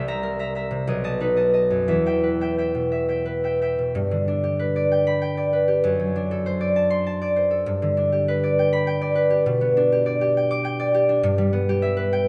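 This classical solo harp passage, cut from a longer piece, moves in a rubato 6/8 at roughly 56-69 BPM, with a mysterious, wistful air that opens in E minor over C7 and B7 chords before turning toward G major at 4.0 s. The fingerpicked concert harp sits up front with a bright, ringing tone across a range from B1 to D6, tracing G, D7/F# and G/B before settling on Em/G near 11.2 s. A moderate concert hall reverb lends the playing a spacious glow.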